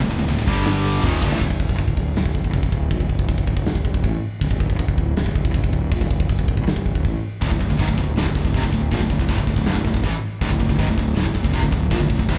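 Aggressive and dark, this heavy metal excerpt captures a live club gig heard through the venue's PA, with a faint mains hum under the sound. A growly, fuzz-laden fingered bass runs up front throughout, joined at 0.3 seconds by a big acoustic rock kit with a punchy kick, a medium-tuned snare, and bright china and crash cymbals. G5 and D5 chords open the cut, with riffs played by two high-gain distorted guitars, one up front and one double-tracked and very quiet, alongside a compressed distorted guitar with slapback echo in the background. All three guitars stop at 1.4 seconds, and only the up-front high-gain guitar and the echoing background guitar return at 7.4 seconds.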